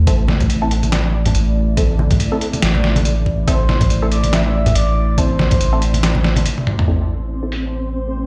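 This deep dubstep excerpt moves at 141 BPM in a half-time 4/4 feel with swung sixteenths, settling heavy and brooding on A minor. An overdriven, knocking electronic kick and a muffled, pitched-down trip hop sampler kit of hi-hat, snare and toms start at 0.1 s, the kit sitting up front with a compressed, small-room grit, while bright congas played with soft hands stay in the background. Underneath, a round, up-front sub bass holds a low A throughout, and a moody sawtooth pad with a sub octave, wave-folding and ring modulation sustains dark chords through chorus and vintage 12-bit sampler grit. Muted, detuned chord stabs with a filter pluck sound through phaser and dub echo, and at 3.5 s a breathy, flute-like lead with vibrato enters high in lush chorus and echo. After a short break and drum fill around 6.6 s, a flickering granular texture comes forward from 7.2 s, and the whole mix carries a stone-room reverb as if heard on a big sound system in a bare space.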